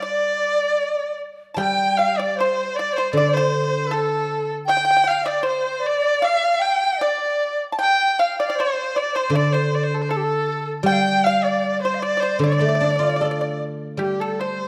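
A dark, moderately reverberant stage sound surrounds this short, graceful and wistful cut from a longer Chinese chamber ensemble piece, moving at 77 BPM in a straight 2/4 in the D yu mode. Up front, a single bowed erhu carries the melody with a clear, smooth, even tone, its vibrato and portamento lending it a slightly distant, singing quality. Behind it, a large bamboo dizi adds a second line, its buzzing membrane colouring a pure, expressive voice with soft attacks, vibrato and lifted highs, before it drops out at 13.6 seconds. The pipa supplies another second line, bright, dry and percussive under its fingerpicks. The guzheng, also prominent in the mix, gives ringing, silvery accompaniment from the low register, pausing at 5.4 seconds and returning at 9.3 seconds to play through to the end.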